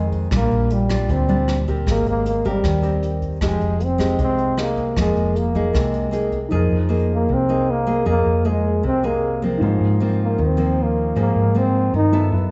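A breathy trombone carries the melody from the start, mellow and soft in attack with a gentle jazz vibrato, up front over a fingerpicked nylon-string guitar whose full-bodied, deep classical tone lets an occasional finger squeak through. A round, dark hollow-body electric bass sits close beside them, amped and prominent, in this smooth, wistful bossa nova fragment cut from a longer piece. A brushed jazz kit joins at 0.1 seconds with hi-hat, rim click and a boomy kick, sitting further back in the mix until it drops out at 6.4 seconds. At 6.5 seconds a concert grand piano with a deep bass enters quietly above the trombone as the piece moves into its second part. Minor-seventh and ninth chords give the harmony its gentle ache, and a moderate hall reverb wraps the ensemble in a soft, dulled top end.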